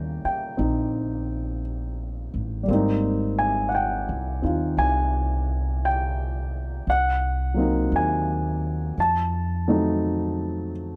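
Tender and romantic, this slow jazz ballad excerpt moves at 57 BPM in Ab major with a lilting swing, its chords drifting from Eb7b9 to Abmaj9 and on through Cm7b5 to F7b9. A grand piano with a short sustain supplies the accompaniment, paired throughout with a woody, thumpy pizzicato upright bass on steel strings. Both instruments sit up front in a dry, close sound with little reverb.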